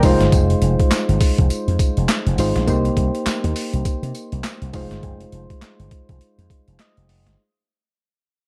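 A swung 16th-note groove at 102 BPM drives this confident, punchy new jack swing excerpt in R&B style, where a gritty, overdriven boom bap sampler-style kit with thumpy kick, high-tuned snare, hi-hat, handclaps and tambourine sits up front beside a bright slap bass run through an envelope filter, while soft, round electric-piano-like synth keys with a warbling chorus move through Fm7 and Cm7 and play a fill from 6.5 seconds, a barely audible crisp group handclap joins at 0.9 seconds, and the dark, dry production fades out throughout.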